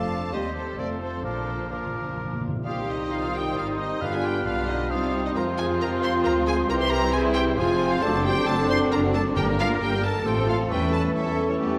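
In a quick, rubato 3/4 at 134 BPM, this stormy, restless classical-period excerpt in C minor sets a lush, focused violin section melody over a background of hollow flute, mellow clarinet, oboe, a second violin section, bassoon, viola section, French horn section chords, cello section and round soft-mallet timpani, which enter at 1.2 s with a fill and return briefly at 9.4 s, while a lush, portamento-tinged double bass section anchors the bass, all bathed in a recital-hall reverb.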